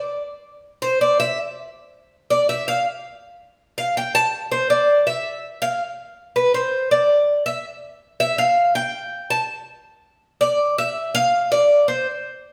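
A bright, metallic Cuban tres takes the solo from 0.8 to 12.1 seconds, its picked double strings, some doubled at the octave, ringing up front between B4 and A5. This brief latin passage, cut from a longer piece, moves at a danceable 163 BPM in a straight 4/4 with a nostalgic mood. It was recorded live in one room, and a wet stone reverb gives the tres a lingering, echoing tail.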